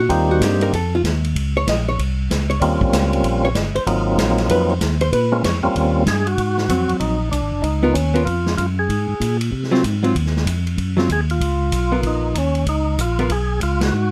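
This is a short cut from a greasy, bluesy soul jazz organ trio, recorded with light reverb and with both organs turning through a slow rotary speaker up front. It swings hard at 191 BPM in 4/4, in Ab mixolydian, moving through Cm7, F7, Bbm and Eb13 before settling on Ab13 and Db13. A fat, lightly overdriven tonewheel organ with chorus vibrato and key click carries the bass line, while a second, clean tonewheel organ with second-harmonic percussion plays the melody. A dark, compressed, picked hollow-body archtop guitar comps and takes a solo from the start until 6.4 seconds, when the second section begins. A distant, roomy big-band drum kit with a medium-tuned snare, punchy kick, hi-hat and ride keeps time underneath, and the band hits an accent together at 13.8 seconds.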